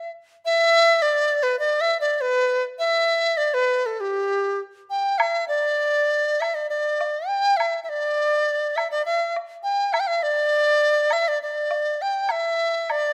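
A large dizi opens alone, up front and close, its bamboo tone pure with a buzzing membrane, playing a pastoral, graceful melody between G4 and G5 with vibrato, tongued notes and a slightly unsteady line. At 5.2 seconds a dark, dry woodblock joins softly in the background of this Chinese chamber piece, which moves freely in rubato around 102 BPM in 4/4. Light reverb surrounds the detailed, intimate sound of this fragment from a longer work.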